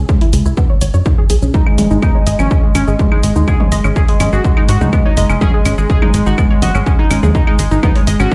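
This dark, hypnotic melodic techno excerpt sounds as if played on a big sound system in a bare room, with light reverb and a large studio reverb, moving at 124 BPM in a straight 4/4 over C#m. An overdriven, layered electronic kick sits up front beside a tight, punchy sawtooth sequencer bass that pumps with sidechain, while a tape-flavored analog drum machine adds claves, hi-hat, shaker and toms re-recorded in a small room. A round, detuned analog pluck plays ring-modulated arpeggios through chorus and delay with a filter sweep running throughout, and at 1.5 s a juicy, wave-folded resonant polysynth enters with a sustained melody over a G#5 chord, treated with chorus and digital delay.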